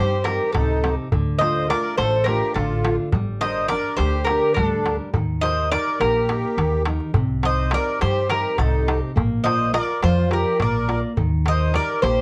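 Heard through worn, warbling old cassette tape with a warbly pitch drift and light reverb, this moody, brooding Greek folk excerpt in 7/8 at 209 BPM sets a metallic, double-strung bouzouki melody up front over a reedy, sweet accordion second line with light tremolo tuning, full-bodied fingerpicked steel-string acoustic guitar, growly pizzicato upright bass and a crisp metal-shell darbuka entering at 0.2 seconds, moving through chords from Cm to Dm, Gm, Eb and Bb.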